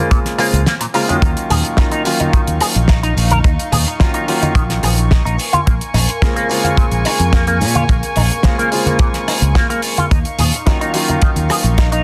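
The sound is dense and heavily limited, set in a small room with light reverb. This nu-disco excerpt moves at 108 BPM in a straight 4/4 in Eb dorian, sensual and cosmic in mood, cycling between Bbm7 and Ebm9. A dry, tight kick sits up front beside a damped 70s kit with a fat snare, hi-hat and rim click, both touched by studio reverb, while ringing maracas and congas stay in the background; the kick drops out briefly from 0.7 to 1.2 seconds. A fingered electric bass, direct and amped, holds the low end, and an electric guitar plays a bright, twangy, picked riff through an envelope filter with analog chorus and delay. A warm grand piano accompanies with gritty 12-bit sampler texture, sidechain pumping and analog delay. From 1.2 seconds a dark, intimate violin section adds sustained bowed chords with light vibrato, a soft attack and a smooth top, carrying the same sampler grit and pumping.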